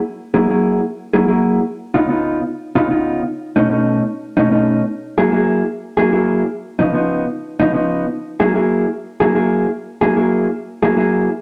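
A mellow, dark electric guitar plays alone from 0.3 s to 11.3 s, clean, fingered and compressed up front, in a swaggering, laid-back swung blues cut from a longer piece, with ninth chords moving over a rough rehearsal-room recording carrying tube saturation and a wet stone room reverb.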